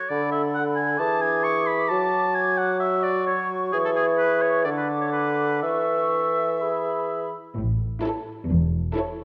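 Cheerful and lively, this fragment of a quick classical-period orchestral movement opens with woodwinds: an up-front oboe with light vibrato carries a second line alongside an airy, hollow flute section, a distant, roomy clarinet in the background, and a mellow bassoon accompaniment. At 7.6 seconds a rich, focused double bass section and a smooth cello section enter on the bass line, and at 8.0 seconds the violins carry the melody with portamento and expressive vibrato, joined by an even second violin line and a lush viola accompaniment. Moderate scoring-stage reverb frames a dark, warm production, and the rubato feel gives the phrases a flexible sway.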